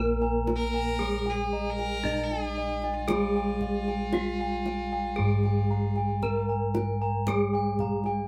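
A serene, ceremonial Javanese gamelan excerpt at a slow 57 BPM in 4/4 opens with a bright, shimmering bronze metallophone melody over a wooden-mallet metallophone accompaniment, mellow padded bossed gongs up front in arpeggios, a second metallophone arpeggio line set in the background, and round bossed-gong bass; soft-handed kendang joins at 0.2 seconds, and a biting, earthy bowed fiddle second line enters at 0.6 seconds and stops at 6.4 seconds, all heard through the light reverb of a band playing live in one room.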